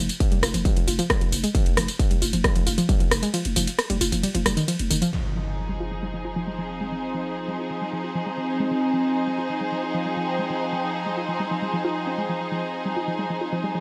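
Dry and gritty, with a light digital ambience around it, this cut from a longer piece of driving peak-time techno runs at 134 BPM in F minor and feels intense and hypnotic. It opens on a drop driven by a distorted, up-front electronic kick. Beneath it sit a growling, buzzy 808-style bass with overdrive and a low-pass filter, and a techno kit of metallic hats, ride cymbal, rim click and tambourine, both pumping against the sidechain. Over them a warbly, dusty pluck riff sounds nasal and lo-fi, roughened by 12-bit sampler grit, chorus and tape echo. The kick drops out at 3.3 seconds, and the bass and kit fall away soon after, as an electronic impact hits at 5.1 seconds and a rich, smooth bowed string section enters with vibrato on an F minor chord. From 6.2 seconds a resonant, wave-folded drone with moving overtones and a shifting notch fades in slowly under chorus and its own reverb, pumping alongside the strings and the pluck to the end.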